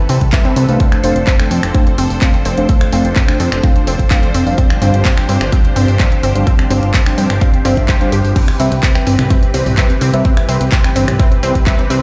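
Progressive house in C major at 127 BPM, this uplifting, expansive excerpt cut from a longer piece moves through Cmaj7, F6 and G7sus4 before returning to Cmaj7 at 8.4 seconds. A punchy, up-front electronic kick anchors a tape-warm house kit of crash cymbal, hi-hat, handclaps and finger snaps, while a fat, nasal analog bass with tube saturation pumps beneath it. Above, a lush, bright unison pluck plays arpeggios through digital delay with a filter sweep running across it, and a deep, mellow chord stab with chorus, phaser and delay adds soft, dark colour. A filtered supersaw swell with phaser holds evolving sustained chords underneath, and all of these synth parts breathe with sidechain pumping. A very quiet electronic swell sounds from 7.6 seconds, and analog-sounding electronic congas, toms and bongos join in the background from 8.4 seconds. The whole mix carries a light stone-room reverb, as if heard on a big sound system in a bare room.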